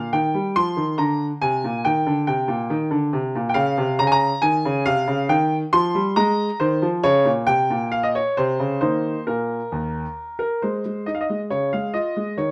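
Set in light reverb, a clear concert grand piano sits up front with an open tone and deep bass, playing solo across a range from Eb2 to C6. This cheerful, graceful classical-period sonatina moves at 138 BPM in a straight 4/4, opening on Eb and Bb7/D harmonies before settling into Ab major from 3.6 s. A new section begins at 10.6 s, turning from Ab to Db before the fragment breaks off at 12.5 s.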